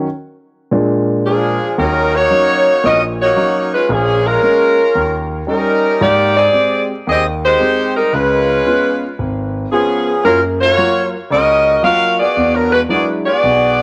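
Dramatic and brassy, this swung jazz passage in Eb minor moves at 113 BPM in 4/4, with a lilting eighth-note swing. A warm grand piano opens alone as accompaniment, sitting up front with an intimate character and audible action noise. At 1.3 seconds a bright saxophone section takes the melody, playing as an ensemble with light vibrato and an analog delay, its up-front presence sitting above the piano. The harmony travels through Ebm7, Bbm7, Eb7, Abmaj7, Db7 and Gbmaj7 before landing on an E9 near the close. Both parts carry the grain of cassette tape, and the home recording is bathed in a short, wet studio reverb, giving the cut from a longer piece a lo-fi, close-up feel.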